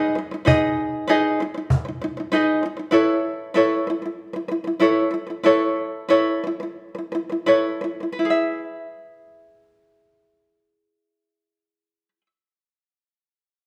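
Carefree and heartfelt, this short excerpt of acoustic pop in E major moves in a straight 4/4 at 83-98 BPM, carried by a light, fingerpicked tenor ukulele accompaniment sitting up front that moves from G#m to Aadd9, slowing down across the Aadd9 before settling on E. A snappy, band-limited cajon with snares, played with soft hands, sounds only briefly from 0.5 to 1.8 seconds, and the wet reverb of a recital hall surrounds the performance.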